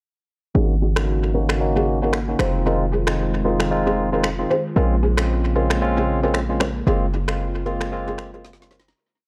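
An afrobeats piece with a mellow, smooth mood, set entirely in a breakdown that carries a filter sweep from 0.6 seconds onward and fades out from 6.9 seconds. A barky tine electric piano sits up front with bright, clean syncopated chords, while a hard-hitting 808-style bass plays a punchy, heavy, bouncy syncopated line beneath it. An airy, breathy pad with chorus and a slow attack holds soft sustained chords in the background. A fingerpicked nylon-string guitar, with audible finger squeak and a dub echo, repeats an interlocking figure doubled in thirds. Electronic rim clicks layered with finger snaps, a woody snare, soft kick and shaker carry a tape-warm groove with dub echo, ending on a drum fill at 8.4 seconds, all within an echo-heavy mix of light reverb and digital ambience.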